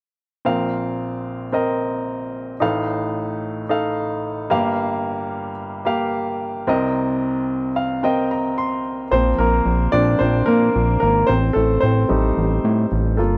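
The sound is dry and close, with a small-room ambience in the manner of a 1970s studio recording. This uplifting, anthemic pop fragment moves at 111 BPM in a straight 4/4. A clear, polished baby grand piano sits up front from 0.4 seconds, spanning a broad range as it carries the accompaniment through Bbsus2, F7/A, Gm7 and Cm7 before a fill at 7.5 seconds. At 9.1 seconds the piano steps forward into a solo, and a fat, thick analog bass enters beneath it in the low register. That bass is a saturated, wave-folded blend of detuned sawtooth, square and sine tones, with a fast attack, a filter pluck and a sustained character. It rides the closing move from Bbsus2 to Am7b5 in this passage, which is cut from a longer piece.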